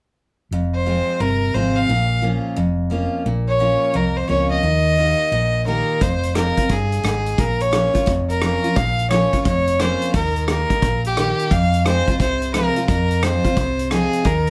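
Swung eighths in 4/4 carry this dusty, lonesome honky-tonk and classic country fragment, where a picked dreadnought acoustic guitar with fresh strings and audible finger squeak and a dark, round hollow-body electric bass back a biting, up-front fiddle that takes the melody with light vibrato, until a natural drum kit of hi-hat, punchy kick and rim click joins at 6.0 s, the recording set in moderate studio ambience heard from further back in the room.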